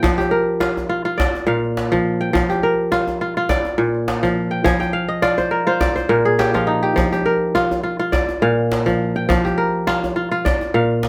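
A ringing, crisp kora sits up front, fingerpicking arpeggios in F dorian over gently swung 104 BPM West African traditional music, adding a fill at 4.7 seconds while a distant djembe with metal rattles keeps time underneath, giving this short cut from a longer piece a reflective, hypnotic mood in a moderate small-room ambience.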